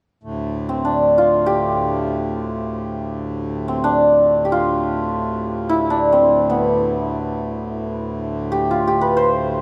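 A close, detailed recording in a recital hall's moderate reverb carries this longing, introspective Indian classical excerpt in free time, where a hand-pumped harmonium sustains a reedy, breathing drone from 0.2 seconds beneath an up-front santur whose hammered, shimmering, ringing melody enters at 0.7 seconds.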